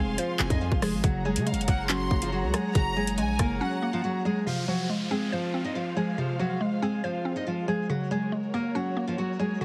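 A bright, fingerpicked nylon-string guitar carries the melody of this dark, cold half-time drill cut at 140 BPM in F phrygian, over a woody, warbling FM synth pluck, lush bowed strings, a close violin section with digital delay that stops at 4.0 seconds, and a saturated, aggressive 808-style bass and hard-clipped drill kit with metallic hats that drop away by the break at 3.6 seconds, after which an electronic downlifter enters at 4.5 seconds, all within a heavily compressed, radio-like sound in a small room.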